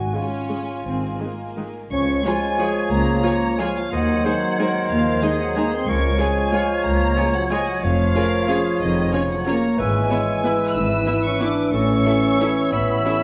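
Elegant and festive, this classical excerpt in a rubato three-time opens with dark, distant trumpet stabs over bowed strings, with a rich, vibrato-laden violin section carrying the melody above second violins, violas, cellos and double basses, before mellow French horn chords, a mellow cor anglais, a pure flute group, a mellow bassoon and, from 2.3 s, a bright clarinet join at 1.9 s, all set in a reverberant recital hall with a layer of vinyl crackle as the harmony shifts into a new key at 9.8 s.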